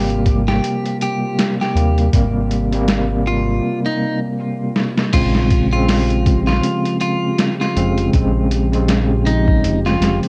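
A melancholic, cinematic trip hop fragment in Bb dorian at 80 BPM opens on an Abmaj7 chord. It pairs a barky, overdriven tine electric piano carrying medium tremolo and a filter sweep with a clean, picked electric guitar melody trailing dub echo, a round, deep analog bass up front, and a warbling, nostalgic pad with chorus sitting in the background. A muffled, pitched-down sampler-style kit with a thumpy kick joins almost at once, while a tense, string-like drone hovers barely audible early on. After a break at 3.6 seconds and a drum fill, the music moves to Bbm7 at 5.1 seconds, and the whole piece carries the lo-fi haze of a home cassette recording with digital ambience.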